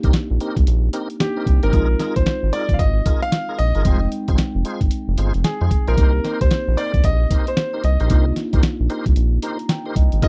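A clear, intimate concert grand piano carries the melody from 1.2 seconds, its audible action noise and long sustain touched by a slapback echo. This is a bouncy, confident new jack swing groove with an R&B heart, set in a swung 4/4 and cut from a longer piece. Up front, a dusty, sampler-style drum kit gives a thumpy kick, a medium-tuned snare and hi-hat with a gritty, compressed, tape-warm sound, while a round, deep analog bass with a fast attack and evolving ring-modulated tone sits beside it. Underneath, a mellow tine electric piano supplies accompaniment and adds a short fill at 9.2 seconds, and a full tonewheel organ punctuates with stabs, its key click and fast rotary speaker shimmering with chorus vibrato. The chords move from Cm7 through Bb7sus4 and Fm7 back to Cm7, all captured in a dry, close 1970s-style studio sound.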